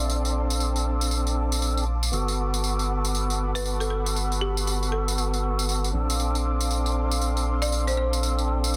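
A soft, round pluck touches a single note at the very start and fades by 0.8 s, as a smooth, detuned pad with chorus and tremolo, a tonewheel organ and a rubbery square bass all begin together. This is a sunny, relaxed deep house cut from a longer piece, moving at 118 BPM in 4/4 with a swung sixteenth-note feel. The organ sits up front with fat, key-clicking stabs turning through a slow rotary speaker and tape echo, while the bouncy, hollow bass anchors the low end and an overdriven electronic tambourine keeps time. From 3.6 s a dry, woody marimba struck with hard mallets carries a rustic melody through tape echo. The harmony moves between Bbmaj9 and Gmaj9 under light reverb, in a dense, heavily limited modern master.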